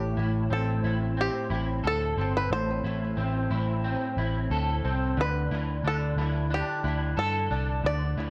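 A melancholic, ethereal dream pop passage opens at once with a twangy bluegrass banjo melody, played with fingerpicks and carrying delay, over arpeggios from a slightly broken-up electric guitar treated with ensemble chorus and delay, and a round, punchy, foam-muted vintage electric bass beneath. The harmony rests on Am7 before moving to Dsus2 at 5.2 seconds. Light small room reverb and a dark, warm production wrap the three up-front parts, and the 8.3-second clip is cut from a longer piece.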